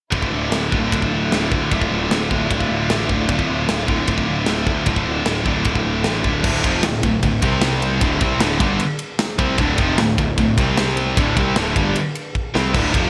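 A tight, up-front metal drum kit with a medium-tuned snare and gated reverb drives this aggressive, dark heavy metal excerpt in D minor at 152 BPM, while two picked high-gain guitars, one scooped and set in the background, play riffs over a growly, fuzz-laden picked bass. A very quiet, distant string section holds smooth, lush bowed chords until 6.4 seconds, when a double-tracked distorted guitar joins the riff and the harmony moves between Dm and C5. A drum fill arrives at 12.4 seconds, and the bright 1980s-style production sits in a moderate hall reverb.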